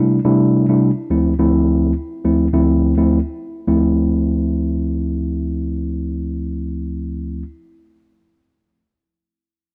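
A mellow tine electric piano carries this short afrobeats excerpt on its own, sitting clean and up front as it plays accompaniment from 0.0 to 7.4 seconds across a range from D2 to E4. The mood is smooth and hypnotic, moving at 105 BPM in 4/4 with a gentle 16th-note swing and set in D minor. The harmony opens on C6 and settles onto Dm7 at 1.1 seconds. A first passage gives way to a second at 3.7 seconds, which runs until 6.0 seconds. The piano's direct tone is framed by light reverb and a small room ambience, while the dry, gritty recording carries the texture of cassette tape.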